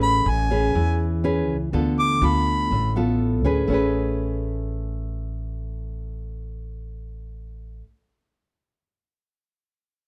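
A dark production with light reverb frames this short, romantic and relaxed bossa nova fragment in a straight 4/4 feel. Up front, a jazz-style harmonica solo with a smooth top, light vibrato, scooped notes and tongue slaps carries the melody until 3.0 seconds, over Amaj9 and Dm6 chords. A classical, fingerpicked nylon-string guitar with audible finger squeak and a woody, thumpy pizzicato upright bass on gut strings provide accompaniment from the start and continue through nearly 8 seconds.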